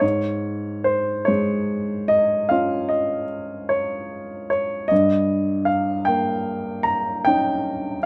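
Serene and nostalgic, this brief excerpt from a longer romantic nocturne unfolds in classical style at a slow 47-52 BPM, counted in dotted quarters within a 12/8 metre. A solo baby grand piano carries the whole passage from 0.0 to 8.1 seconds, its tone clear, polished and up front, ranging from G2 up to Bb5. The playing moves with a flexible rubato feel, letting time breathe rather than holding a strict pulse. The harmony rests on Db/Ab before shifting at 4.9 seconds to Eb7/G, lending the opening a gentle sense of motion. Light reverb surrounds the instrument, and the tuning sits at A4 = 439 Hz, giving the sound a subtly distinctive pitch centre.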